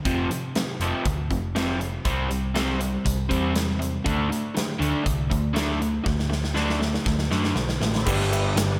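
A big arena sound with lush hall reverb frames this driving, swaggering classic rock excerpt at 120 BPM, where a crunchy, double-tracked overdriven guitar riff sits up front over a dark, round hollow-body bass and a punchy big-room drum kit with bright cymbals, a drum fill runs from 6.1 to 8.1 seconds, a fat tonewheel organ with slow rotary speaker enters in the background at 7.8 seconds, and a woody upright piano with slapback echo and a very quiet, grainy egg shaker join at 8.1 seconds as the chords move from F5 through C and D5 to G.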